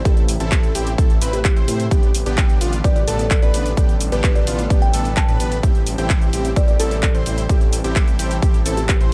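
Dark, dry production frames this euphoric, emotional festival progressive house excerpt at 129 BPM, where a punchy, overdriven electronic kick sits up front beside an overdriven big-room kit of handclaps, hi-hat and shaker, a detuned saw bass and a huge compressed supersaw riff pump with sidechain, a woody kalimba melody rings through digital delay, a mellow unison lead plays arpeggios in the background, and a very quiet, lush pad holds sustained chords over Am, G/A and C/A.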